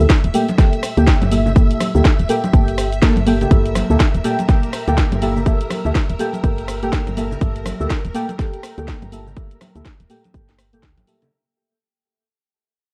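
A dark, detuned chord stab sits up front, roughened by vintage 12-bit sampler grit and colored with chorus, phaser, tape echo and sidechain pumping, striking a Gm69 chord from the start of this deep, moody deep house passage in G dorian at 123 BPM with a 60% swing on the sixteenths. A punchy electronic kick drives beneath a woody, round FM bass that pumps with the sidechain, while a house kit with a cracking snare, hi-hat, rim click and shaker plays alongside bright, damped congas that enter in the background at 0.5 seconds. A shimmering vintage string machine adds a soft sustained violin layer under ensemble chorus, and the dry, cassette-tinged drop fades out from 3.5 seconds until the cut at 11.3 seconds.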